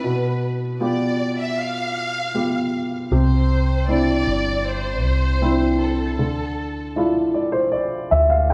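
Pop in C major at a relaxed 78 BPM, this hopeful, emotional passage is cut from a longer piece and has the feel of a band playing live together in one stone room with a wet reverb. A lush bowed violin section carries the melody from the start, its expressive vibrato touched with a digital delay, and it sits further back than the other parts until it stops at 7.0 seconds. An upright piano accompanies throughout, polished and woody in tone and placed up front, and it closes with a fill from 7.0 to 8.5 seconds. A fretless electric bass enters at 3.1 seconds with a round, hollow-body sound, dark and amped, low in the register and also close to the listener. The harmony moves from G7/B to Cadd9 and then Dmadd9, leaving the moment feeling open and unresolved.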